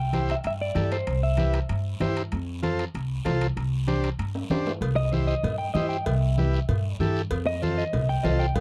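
A short excerpt of sunny, danceable cumbia opens at 192 BPM in C major, with a woody, thumpy pizzicato upright bass sitting up front from the very start, joined almost at once by a buzzy vintage combo organ carrying a light vibrato. A clean, picked electric guitar states a brief melody over the first 1.5 seconds, bathed in spring reverb and slapback echo. Congas with a thick, soft-handed skin, ringing metal timbales and cowbell, and a raspy, saturated guiro fill out the percussion, the guiro sitting far back in the mix. The chords move from C to F to Csus2, and a drum fill at 4.3 seconds leads into a guitar solo from 4.8 seconds over a return to C and then F. The sound is a dry, close studio recording in a 1970s style, with little reverb beyond the guitar's own effects.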